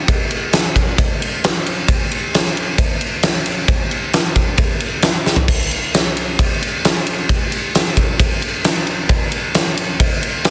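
A huge, up-front acoustic rock drum kit drives this aggressive, heavy 133 BPM passage in straight 4/4, its punchy kick, fat snare, toms and bright crash, ride and splash cymbals ringing in a big natural room with light reverb, breaking into a fill at 5.3 seconds before the clip, cut from a longer piece, ends under a dense, heavily limited modern master.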